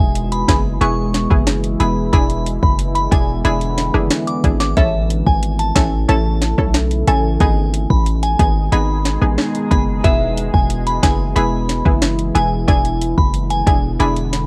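A glassy FM synth bell carries the melody over a round, detuned analog pluck, a deep, moody ambient pad with slow-attack sustained chords that pump under sidechain, and a punchy, heavy 808-style bass, before an up-front electronic afro-pop kit with deep kick, sharp snare and metallic hats joins at 0.2 seconds. Together they set a sunny, summery dancehall groove at 91 BPM in E major, moving through E, E7, A and G#m, with a cassette-tape warble, chorus and tape echo on the bell giving this short home-recorded cut its vintage feel.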